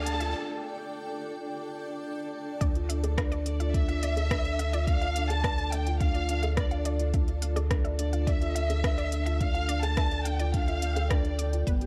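A dark, expressive violin section carries the melody in this cinematic piano and strings electronica excerpt, its bowed ensemble tone lush with vibrato and a smooth top as it moves between D5 and A5. Underneath, a felt-muted upright piano plays a mellow, boxy riff with audible action noise and a delay, while a granular cloud pad holds blurred, detuned chords with its own built-in reverb and a sidechain pumping. A round analog bass sits up front, deep and sustained, pumping alongside a faint, bright unison pluck that spins delayed arpeggios in the background. An organic electronic drum kit adds smooth hi-hats and rim clicks with overdrive, and at 2.6 seconds a deep, layered electronic kick arrives as the short build-up gives way to the drop. At 106 BPM in a straight 4/4, the harmony moves from D minor to Dmadd9 at that same moment, giving the moving piece a brooding yet lifting pull under a light reverb.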